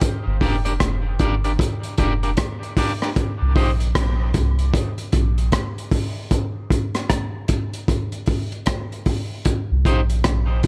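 Deep and hypnotic, this dub reggae excerpt from a longer piece moves at 76 BPM in 4/4 with a swung sixteenth-note feel, built on a crunchy breakbeat kit of hi-hat, rim click and tight kick that sounds dark, gritty and saturated with a rolled-off top, sitting up front beside a round, mellow sub bass that enters at 0.3 seconds. A twangy, slightly broken-up electric guitar adds accompaniment bathed in dub echo over the opening G minor stretch, dropping out at 3.7 seconds before a brief return near the close. The echo-heavy mix sits in a small room ambience, with a break from 6.3 to 9.5 seconds leading into a C minor chord.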